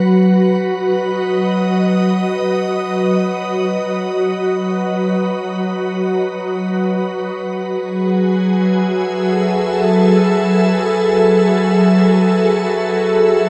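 A soft, organ-like pad plays alone through this serene, melancholic ambient fragment from a longer piece, its pure, detuned sine tones fading in slowly and ringing into long releases across a range from F#3 to E5. Treated with ensemble chorus, built-in reverb and analog delay, the bright, full-bodied pad sits up front in a dreamy mix steeped in plate reverb, tuned to A4 = 441 Hz. It holds a rootless G#m7/F# before settling onto F#m11 at 7.3 seconds.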